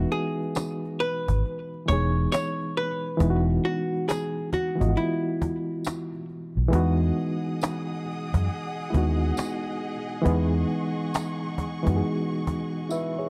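A swung sixteenth-note groove from a snappy, dry cajon and jingly tambourine carries this dreamy, cosy lo-fi hip hop excerpt, where a dark, hollow-body archtop guitar plays a clean, picked melody until 6.2 seconds over a reedy, worn, slightly out-of-tune electric piano with fast tremolo and a round, foam-muted vintage bass up front, before a bowed string section with a soft attack and vibrato enters at 6.7 seconds and the cajon closes on a fill at 12.9 seconds, set in light small-room reverb and a dusky, warm production.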